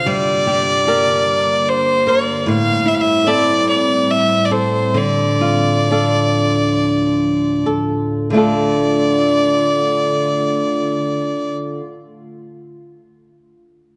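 A single clear fiddle sits up front and carries the melody of this mournful Celtic slow air, its bowed line biting and intense, with a light vibrato and a smooth top across a narrow span from C5 to F5. Beneath it, a fingerpicked flamenco guitar gives acoustic accompaniment with a warm tone. A glassy FM pad supplies sustained chords, mellow and ethereal, with a slow attack, long release, ensemble chorus and its own built-in reverb, sitting well behind the other two parts. The piece is in D minor and 3/4, tuned to A4 = 436 Hz, with a free, rubato feel between 45 and 77 BPM. The harmony moves from Gm to Am7 to Dm while the tempo slows from 2.5 to 8.3 seconds, and a new passage begins there to carry the longing mood onward. A moderate scoring-stage reverb lends the whole excerpt a sense of space, and the clip is cut from a longer piece.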